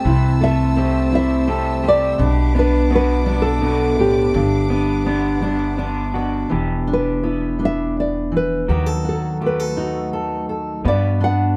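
Tender and nostalgic, this acoustic folk-pop ballad moves at 83 BPM in an unhurried 3/4 lilt in G major, and it is cut from a longer piece. A dark, deep-toned nylon-string guitar carries the melody with thumb-plucked notes, over a full-bodied, fingerpicked jumbo steel-string guitar that sits up front with the accompaniment. An electric guitar through a small old amp adds picked arpeggios with a slightly broken-up, lo-fi, compressed tone and a shimmering harmonic tremolo, while a woody, thumpy upright bass with gut strings anchors the low end from 0.1 seconds. A soft-attack string section bowing sul tasto with light vibrato holds intimate sustained chords high above the opening, falling away at 6.5 seconds as the second section begins and the harmony turns toward Em7 and B7/D# before settling back on Gmaj7. Close, detailed microphones and light reverb keep the sound near and personal.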